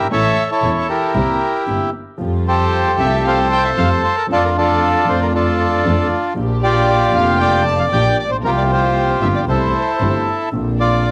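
Tango in a passionate, nostalgic mood with a rubato feel, led by a reedy, dark bandoneon up front. A bowed double bass with vibrato sits close and focused, while a mellow grand piano with audible action noise and a soft-attack, sul tasto symphonic string section float in the background with a cassette-tape tint. A lush, very quiet violin section adds a smooth second line, all heard through moderate spring reverb in a small, homespun cassette-recorded room, with the music shifting into a new section at 2.2 s.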